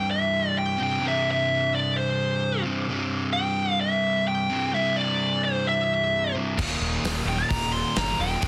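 A dark, high-gain lead guitar with distortion and tape echo carries the melody up front over a hollow-toned overdriven semi-hollow guitar riff in this powerful, energetic hard rock excerpt at 129 BPM in 4/4, and at 6.6 seconds, as the harmony moves from C to Eb5, a big rock drum kit with a punchy, soft-clipped kick, a fuzz-laden picked electric bass with overdrive, a bright distorted guitar sitting in the background and a very quiet double-tracked crunchy overdriven guitar join in, filling a small room ambience and a dense, heavily limited modern master.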